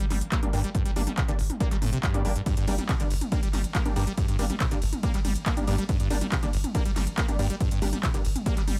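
Driving peak-time techno with a hypnotic, intense mood, this short cut opens on a squelchy, resonant sawtooth acid bass riff dressed in lush chorus and delay, sitting over a deep, saturated sub bass that stays in the background with overdrive, and both pump against the sidechain. A layered, tape-warm drum kit of handclaps, smooth hats, ride cymbal and toms plays from the start, and a punchy analog-style kick joins it at 0.3 seconds. From 0.4 seconds, an aggressive, detuned unison rave stab with ring modulation adds bite through chorus, reverb and delay, all held on a single minor chord in a digital ambience.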